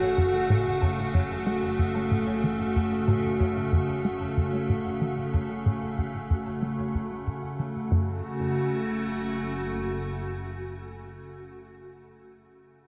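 A steady, straight 4/4 pulse at 93 BPM drives this cosmic, hypnotic stretch of ambient sequencer-driven space music in F# minor, where a tight, punchy sawtooth sequencer bass riff with a dark filter pluck runs under a bright, morphing wavetable pad held up front through 11.3 seconds, a breathy wind-like noise texture, a pulse-width-modulated analog drone low in the background, and a clean, fingered electric guitar arpeggio that fades out before stopping at 8.2 seconds, all bathed in a huge, wet reverb.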